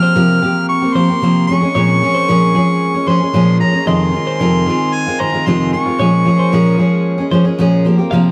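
A smooth-topped, warm harmonica carries the melody up front with tape echo until 7.3 s in this tender, wistful pop fragment at 113 BPM in straight 4/4. Beneath it, a full-bodied picked steel-string acoustic guitar accompanies with audible finger squeak, while a bright, twangy twelve-string electric guitar plays echoed arpeggios. A glassy, ethereal glass harmonica holds slow-attack chords in the background over C7sus4, Bbm7 and Fm7 harmonies, all set in a dark production with moderate studio ambience.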